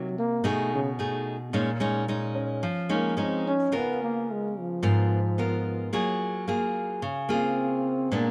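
A dark, forceful trombone carries the melody as a jazz-style solo across this short, smooth and melancholic bossa nova fragment cut from a longer piece, its punchy attack rounded by a silky top and light vibrato. Beneath it, an up-front nylon-string guitar fingerpicks a full-bodied, classical accompaniment with fresh-sounding strings. An intimate grand piano appears briefly in the background from 2.3 to 3.9 seconds, its natural tone carrying audible action noise and long sustain, all within a light reverb.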